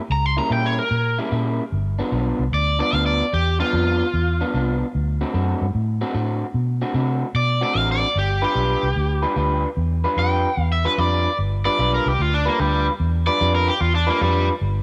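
Opening at 0.1 s with a dark, round, foam-muted fingered bass and a bright, overdriven semi-hollow guitar carrying the melody, this soulful, rollicking electric blues shuffle at 149 BPM in G mixolydian soon adds a slightly broken-up, lo-fi riff from a guitar played through a small old amp, moves from C#dim7 through G7 and D7, and breaks into an overdriven guitar solo at 11.4 s, the whole passage sitting in a moderate echo chamber reverb.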